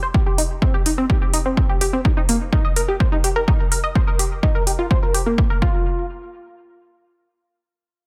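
A tight, driving synth arpeggio leads this melancholic, hypnotic melodic techno passage, its detuned sawtooth-and-triangle filter pluck colored by chorus, phaser, cassette tape character, delay and sidechain pumping until it stops at 6.1 seconds. Up front beside it, a punchy overdriven electronic kick and metallic, overdriven electronic hi-hats, both re-recorded in a large room, drive the straight 4/4 pulse. The mix carries little reverb and sits in a dense, heavily limited modern master, cut from a longer piece.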